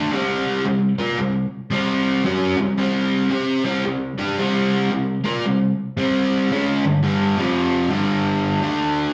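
Gritty and raunchy, this short rock cut from a longer piece moves at 113 BPM in 4/4, with a swung eighth-note feel at 63%. An overdriven electric guitar carries the whole stretch as a solo from 0.0 to 9.1 s, picked and double-tracked, sitting up front with a slapback echo on its tone. Its range spans F2 to C5, and the tuning sits at A4 = 445 Hz. The harmony opens on C5 at 0.1 s, then moves through G5 at 6.5 s, F5 and back to G5. A wet stone room reverb with a one-second tail surrounds the sound, and the playing is captured live in a single room, giving it a raw, immediate character.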